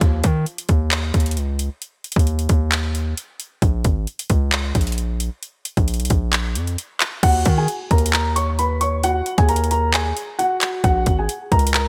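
Dark and hard-hitting, this short trap excerpt from a longer hip hop piece sits at 133 BPM in Eb minor with a half-time feel. From the start, an up-front electronic trap kit of hard-clipped kick, metallic hi-hats, handclaps and crash cymbal drives a break over an 808-style bass that is punchy and sine-based, with a noise layer, fast attack and decaying tail. At 7.2 seconds a mellow, boxy concert grand piano enters with the melody, its deep low end touched by subtle chorus, a low-pass filter and digital delay. Harmony moves from Ebm to Bbm at 10.8 seconds as the piano, bass and drums carry on together. Light reverb and digital ambience frame a bright 1980s-style digital production.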